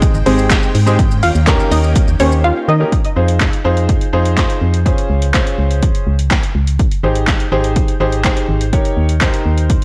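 A straight 4/4 pulse at 124 BPM drives this bittersweet dance-pop clip in F minor, carried by a punchy analog drum machine whose up-front kick and snare sit alongside handclaps, hi-hat and shaker, with a short room on the snare, clap and hats and a tape-warm edge. The drums drop out between 2.4 and 2.9 seconds, just before the groove moves from Abmaj7 and Eb7 into a new section built on Fm7, Dbmaj7, Abmaj7 and Eb7. Underneath, a dark, hollow FM bass with an organ-like tone and fast, decaying attack pumps against the kick, while a clear concert grand piano with deep low end and short sustain plays accompaniment, also pumping. In the opening stretch a lush, detuned unison pluck with a noise layer and moving notch carries the melody through a digital delay, backed by a very quiet vintage string machine voiced as violas, its soft sawtooth chords coloured by phaser and ensemble chorus, and a barely audible human group handclap in a small room. 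Light reverb surrounds a blown-out, overdriven mix that feels driving and loud.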